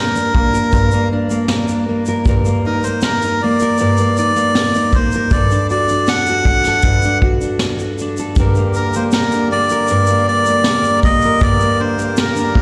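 Heard as a live gig through the venue's PA, with a light recital-hall reverb and small-room ambience, this short cut from a longer acoustic pop piece has a wistful, tender mood at 79 BPM in a straight 4/4, set in G harmonic minor and moving from Gm through Eb/G and D/G back to Gm. A reedy, breathy melodica carries the melody up front over a full-bodied fingerpicked steel-string acoustic guitar, while a vintage brush drum kit with a high-tuned snare, tight kick, shaker and a rolled-off top joins at 0.2 s. At 8.4 s a mellow, airy pedal harmonium enters with soft sustained chords beneath the others.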